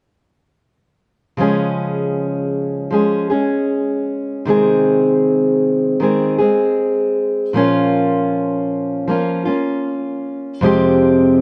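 A dark, warm production with light reverb frames this carefree yet heartfelt pop excerpt, where an up-front fingerpicked steel-string acoustic guitar, its finger squeaks audible, plays alone from 1.4 to 11.4 seconds through a Db, Ab/C, Bbm and Fmadd9 progression.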